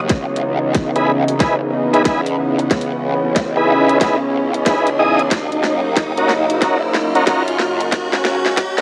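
A smooth sawtooth pad with chorus and a growling, wobbling bass open this funky, playful glitch hop build-up, joined almost at once by a tight, overdriven, up-front kick, a cracking snare and bright hats, a background riser and a very quiet, moody ambient pad, before clean tonewheel organ stabs with key click and analog delay enter at 1.0 s over a swung groove, a filter sweep and a drum fill, moving from C#m9 to D#m7 in a lo-fi cassette sound with light reverb.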